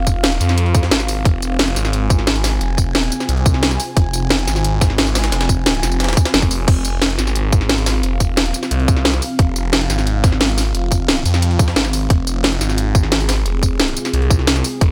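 A straight 4/4 pulse at 177 BPM drives this tense, mechanical dark technical drum and bass excerpt in F minor: a tight, overdriven electronic kick and an up-front, distorted kit of cracking snare, bright hi-hats, tambourine and crash cymbal play over a gritty, pitched-up jungle sampler-style kit of high-tuned snare and hats set in the background, while a swirling, thick, saturated phased saw bass pumps low beneath a deep, moody, warbling pad of sustained chords with chorus and reverb, the bass and pad both pumping, inside a digital ambience.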